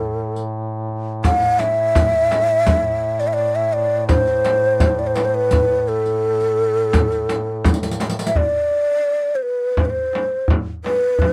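In a straight 4/4, this melancholic, longing fragment of a Persian modal ensemble sets a breathy, hollow low ney melody with vibrato up front over a distant, mellow duduk drone, while a tight tombak, a small, band-limited frame drum and a riq with bright jingles supply the percussion, and a drum fill from 7.6 to 8.4 seconds, where the drone stops, opens a new section, all in a dry, close studio sound touched by light reverb.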